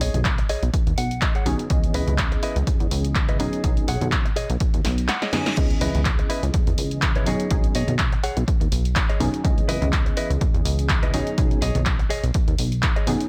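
A clean, direct-recorded electric guitar riff opens this groovy, sensual filtered disco house excerpt, joined from the start by a plucky analog bass built from sawtooth, pulse and triangle tones with ring modulation, a dry analog drum machine with a punchy snare, handclaps, hi-hat and crash, and very quiet, saturated congas and tambourine. A dry electronic kick sits up front as the loudest part, and the bass, guitar and drum machine's hats and cymbals all pump against it. At 1.5 seconds a dark, detuned polysynth comp enters, its sawtooth and square tones treated with chorus and phaser and pumping along with the groove, while the guitar, bass and comp all pass through a low-pass filter. The guitar adds short fills, one of them meeting a drum fill and a faint reverse cymbal around 5.0 seconds. Underneath, the harmony alternates between B6/9 and C#m9 chords, and the mix stays close and fairly dry overall.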